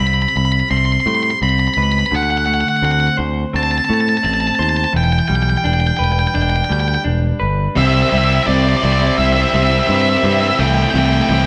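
Captured live in one stone room with moderate reverb, this soaring, euphoric post-rock excerpt in C lydian at 85 BPM builds over its first 7.8 seconds as a dark, fuzzed octave lead guitar sings the melody up front above compressed, clean electric guitar arpeggios and a warm, picked electric bass, until at 7.8 seconds the arpeggios stop and a double-tracked overdriven guitar riff enters on the Cadd9 chord, with the lead ending at 11.4 seconds.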